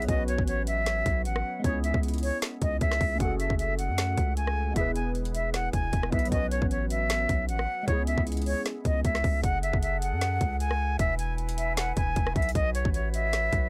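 Melancholic and brooding, this half-time trap and hip hop excerpt moves at 154 BPM in F# minor, cycling through chords such as Bsus2, C#m7 and F#madd9. A silver concert flute carries the melody from start to finish, its airy, metallic tone softened by vibrato and a gentle attack, sitting up front in the mix. Beneath it, a long, deep 808-style bass with a sine-like core and fast, decaying notes anchors the low end, while an electronic trap kit punches through with a hard-clipped kick, woody snare, rim clicks and metallic hi-hats. Glassy, detuned digital keys with a noise layer, filter sweep and chorus shimmer in the background until about 9.5 seconds. At 9.4 seconds a breathy, mellow group of small flutes enters with unsteady, straight-toned sustained chords, lending the closing stretch a fragile haze. The whole recording is dry and gritty, with little reverb, giving it a close, raw presence.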